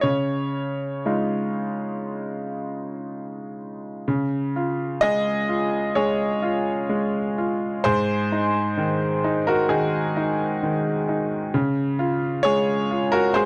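Peaceful and tender, this short fragment of neoclassical minimalist piano unfolds in a rubato 4/4 at roughly 58-67 BPM in Db major, where a solo upright piano with a brilliant, woody, slightly detuned tone and long sustain sits up front, moving from Dbadd9 through Ab7 at 7.8 seconds to rest on Db, all captured in a dry, close 1970s-style studio sound touched with light reverb.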